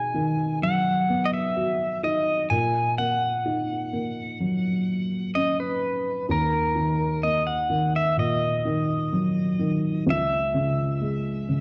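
An acoustic folk-pop ballad in B major at a slow 64 BPM in a straight 4/4, this brief excerpt carries a hopeful, nostalgic mood. An electric pedal steel guitar sits up front with the melody, its bright, clean tone compressed and played with fingerpicks, using slide and volume swells as it moves between A#4 and G#5. Beneath it, a felt-muted upright piano, also up front, supplies the accompaniment from C#2 to G#4, its thick felt giving a soft, dark, intimate sound with short sustain. Both parts play throughout the 11.6 seconds as the harmony moves from B6 to F#6/A#, then to D#m at 6.3 seconds and C#m at 10.1 seconds. A moderate scoring-stage reverb surrounds the pair, and the sound of worn cassette tape adds a warbly pitch drift that deepens the sense of memory.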